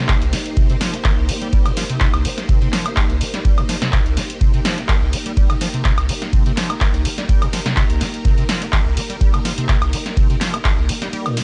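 Dry, gritty and cassette-saturated, this short, trippy, hypnotic acid house excerpt rides a rubbery, resonant square-wave acid bass riff with overdrive, chorus and analog delay beneath lush sawtooth string-machine chords that pump against the beat through vintage sampler grit, while a deep, tape-warm electronic kick and a punchy analog drum machine of snare, handclaps, hi-hat, ride cymbal and woodblock sit up front until the kick drops out at 11.1 seconds.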